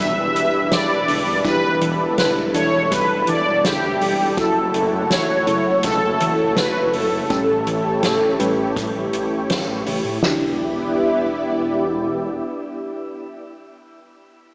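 This synthwave excerpt has a cinematic, moody cast, moving at an unhurried, straight pace. Up front, a mellow synth brass carries the melody with a brassy, evolving tone, colored by chorus, phaser, digital delay and a shimmer reverb. Beneath it, an analog string pad holds silky, string-like chords that pump with sidechain movement. A mellow FM electric piano adds warbling, vintage stabs in the background, and a soft round pluck traces gentle arpeggios until about 10.6 seconds. A dark detuned saw bass rumbles deep and saturated underneath. Two soft-mallet drum kits with a natural hall sound, one featuring a fat snare and boomy kick, play through the middle of the clip, and the whole band hits an accent near 9.5 seconds before the harmony settles back to Em7 at 10.2 seconds, all within a wet plate reverb and a small-speaker character.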